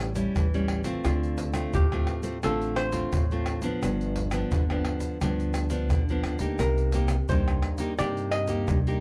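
A clean, dark, picked hollow-body archtop guitar carries the solo from 1.1 seconds in this joyful, lively samba-and-choro fragment at 86 BPM, set over up-front fingerpicked nylon-string guitar with audible finger squeak, woody pizzicato upright bass, and a compressed, saturated percussion blend of tube shaker, tight surdo, pandeiro and tamborim, all moving through A7, Dm7, G7 and Cm7 in a dark, warm production with light reverb.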